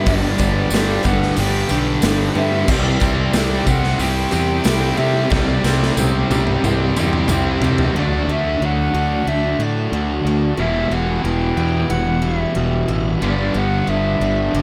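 A blissful, dreamy slice of shoegaze and dream pop in G major at 91 BPM finds a distant, airy concert flute carrying the melody through an analog delay. Around it, from the very start, sit a shimmering, octave-doubled twelve-string acoustic with fresh strings and finger squeak, its arpeggios treated with analog chorus and delay, and a wall of picked riffs: a bright, double-tracked cranked stack guitar with overdrive, a dark fuzz guitar with distortion and subtle chorus, and a lo-fi, slightly broken-up guitar through a small old amp with reverse reverb. A punchy, up-front fuzz bass played with the fingers joins almost at once, alongside a gritty, saturated raw garage kit with a boomy kick and medium-tuned snare in a pumping stone room, plus a jingly tambourine close in the background. The chords move from G to Cmaj7, then a drum fill starting at 5.3 seconds leads into a second section where the kit drops out at 7.9 seconds. 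From there the guitars, bass and flute ride D and Emadd9 before settling back on G as this excerpt, cut from a longer piece, ends.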